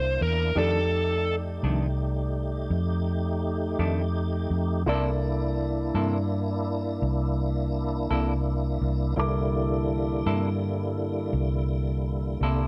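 A biting, overdriven lead guitar plays a brief phrase up front to open this slow, soulful, swaggering 12/8 blues at 56 BPM in C mixolydian, stopping at 1.3 s, while a woody, polished upright piano, a full tonewheel organ with chorus vibrato and slow rotary speaker, and a round, foam-muted vintage electric bass carry the C13 and F13 changes, joined at 0.6 s by a dark, clean semi-hollow guitar colored by harmonic tremolo, with plate reverb on the guitars, piano and organ.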